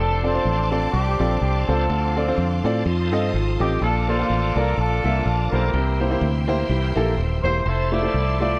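Set in a small room with light reverb, this jubilant, hopeful swung gospel fragment puts a vintage horn section up front carrying the melody over a punchy, foam-muted electric bass, while a shouting tonewheel organ with key click, slow rotary speaker and chorus vibrato holds chords beside a lush bowed string section in the background, a woody upright piano accompanies from 0.2 seconds, and a dark, compressed electric guitar adds brief second lines at 2.9 and 6.7 seconds as the harmony moves from F6 through Dm7, F7, Bbmaj7 and C7 to Fmaj7.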